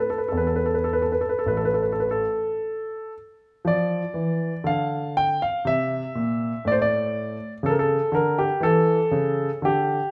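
Set in a moderate recital-hall reverb, this flowing, introspective fragment of a baroque-style classical suite movement features a solo concert grand piano, up front, intimate and natural, with deep bass, long sustain and audible action noise, played with rubato in 4/4 as it moves from an opening A to D minor at 3.6 seconds and on to A over C-sharp at 7.6 seconds.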